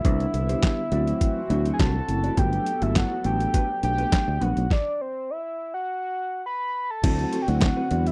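A gritty, pitched-down boom bap drum kit with a thumpy kick and handclaps drives this feel-good, smooth slice of early-eighties boogie funk at 103 BPM in a straight 4/4, with a growly, punchy fingered bass up front beside it. A round, chorused octave-layered synth lead with vibrato carries the melody over Cmaj9, D9 and Gmaj9, while a mellow tine electric piano, a shimmering pulse-width pad and a dark, lushly chorused electric guitar riff sit in the background. After a stop from 4.7 to 7.0 seconds, the section changes on a D7 and very quiet, bright congas appear at 7.0 seconds, all in a dry, close, 1970s-style studio sound.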